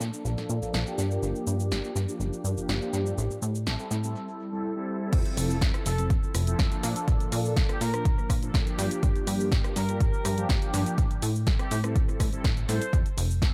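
Filtered disco house with a nostalgic, groovy pull, this excerpt opens on a filter sweep as a plucky, saturated sawtooth bass, a tape-warm analog drum machine with cabasa, rim click, snare, hi-hat and crash, and mellow, detuned synth brass with chorus, phaser and vibrato all breathe under sidechain pumping over chords moving from Bbmaj7 through Gm7 and Am7. At 5.1 seconds the drop arrives with an up-front electronic kick. A dark, distant trumpet section with gritty 12-bit sampler texture carries the melody from 5.9 seconds, all inside an echo-heavy mix with light reverb.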